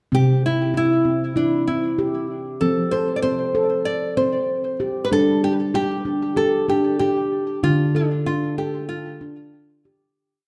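A handpan and a nylon-string guitar begin together, opening a dreamy, gentle world meditative piece in C major at 96 BPM in a straight 4/4. The handpan, struck with soft fingertips, lays down a ringing arpeggiated ostinato from C3 to A4, its dark nitrided-steel tone anchored by sustained bass notes. Up front beside it, the bright, fingerpicked classical guitar carries a motif-based melody of arch-shaped phrases between D4 and D5, with audible finger squeak and a touch of tape echo. The harmony moves through C, F, G5 and Dm, all within a single section. A wet recital-hall reverb blends with small-room ambience to give the whole piece a floating, spacious air. A fade-out begins at 7.6 seconds; the guitar drops away at 9.8 seconds, and the handpan rings on until 10.2 seconds.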